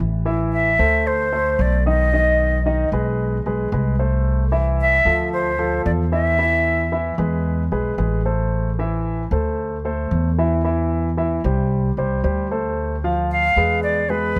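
A straight 4/4 Latin groove at 113 BPM in A minor carries this sultry, danceable excerpt, anchored from the start by a woody, dark pizzicato upright bass up front. A polished concert grand piano with intimate action noise and long sustain plays arpeggios through the changes, while a breathy silver flute, close-miked with a straight, tongued tone, sings the expressive melody from 0.5 to 7.1 seconds and returns at 13.3 seconds. Light reverb gives the trio a gentle sense of space as the harmony moves through Am, Dm and E.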